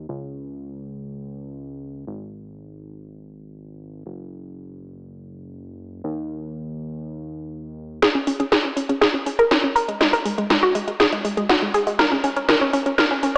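A thick, detuned sawtooth bass opens this expansive, euphoric progressive house passage alone, its filter sweeping across the first 8.0 seconds. At 8.0 s a round, bright analog pluck with ring modulation, chorus and tape echo spins filter-swept arpeggios, while an overdriven, layered house kit with a cracking snare and metallic hats drives a build-up and drum fill. A lush hall reverb and a muffled AM-radio tone give the whole excerpt a hazy cast.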